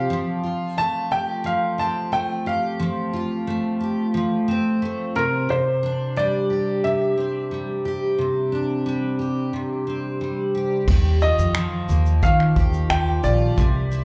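Heard as a live club gig through the venue's PA with a light reverb, this heartfelt, sunny acoustic pop passage, cut from a longer piece, opens with a full-bodied, up-front picked steel-string acoustic guitar, double-tracked and showing a touch of finger squeak, under a bright upright piano melody with audible action noise and slapback echo, moving from Fadd9 to Cadd9. At 10.9 seconds the harmony shifts to Ebadd9 as a growly, woody pizzicato upright bass and a dark, smooth vintage brush kit join, the kit adding a punchy kick, crash, finger snaps and shaker.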